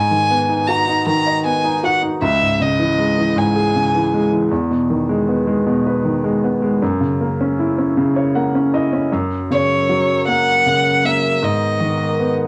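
A woody, bowed solo violin with vibrato carries the aching melody of this dramatic six-eight pop ballad excerpt, set over a clear, polished baby grand piano that plays a fill at 8.0 seconds, while a mellow classical brass section with light vibrato joins softly in the background at 9.1 seconds, all with a cassette-tape character inside a home recording washed in wet studio reverb.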